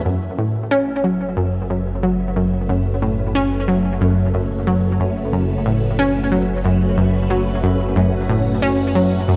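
A lush string machine fades in on an F#m7 chord alongside a very quiet pulsing gated texture, joined at 0.1 s by an up-front, bright analog pluck riff with chorus and analog delay and a fat analog bass holding F#1, in this cosmic, mysterious excerpt of ambient, sequencer-driven space music in F# minor at 91 BPM, heard through moderate plate reverb and worn cassette tape with warbly pitch drift.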